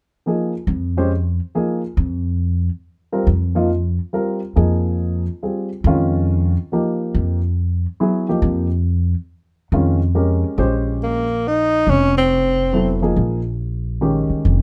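Spiritual and cool, this modal jazz passage in Bb dorian moves at 140 BPM in a swung 3/4, cut from a longer piece. A baby grand piano opens the accompaniment at 0.3 seconds with an intimate, natural tone, short sustain and audible action noise, voicing chords from Bb7sus4 to Ebadd9. An upright bass played pizzicato joins almost at once, its gut strings giving a woody, thumpy, dark sound up front in the low register. When the harmony settles on Bbm11 for the second section, a tenor saxophone takes a brief solo melody from 11.0 to 13.0 seconds, its jazz-style phrasing marked by vibrato and scooped notes and set in plate reverb. The production is dark and warm with light reverb, keeping all three players close and present.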